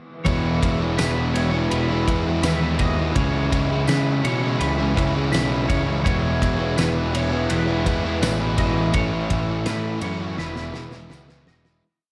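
A short, complete shoegaze and dream pop piece wrapped in moderate stage reverb with a small room's ambience, where a bright, twangy twelve-string electric guitar picks a clean, compressed arpeggio ostinato through ensemble chorus and slapback echo over two overdriven semi-hollow guitars strumming hollow-body chords (one up front with subtle chorus, the other in the background with reverse reverb), a fuzzed, punchy picked bass driving eighth notes, a loose indie kit with a fat snare, tight kick and ride cymbal, and a jingly, distant tambourine, moving from E6 through C#m and Aadd9 in a wistful, blissful mood before a fade-out from 9.0 seconds and a closing drum fill at 10.4 seconds.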